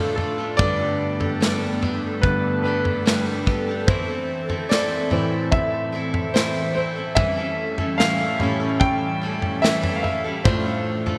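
A slow, straight 4/4 pulse at 73 BPM anchors this emotional, heartbroken pop ballad in A minor, cut from a longer piece and tuned to A4 = 438 Hz. A concert grand piano takes a solo from 0.0 to 11.2 seconds, its deep bass and natural tone placed up front and sweetened by a lush chorus. Beneath it, a picked steel-string acoustic guitar plays arpeggios with audible finger squeak and an auditorium feel, while an airy, breathy pad holds sustained chords with a slow attack and long release, colored by chorus and phaser. A modern studio drum kit enters at 0.2 seconds with a punchy kick, medium-tuned snare and toms, its rolled-off top and mid-forward character wrapped in gated reverb. The harmony moves from Dm/A through Gadd9 and Am to A7 before returning to Dm/A, all set in a lush hall with a three-second decay and a bright 1980s-style digital production.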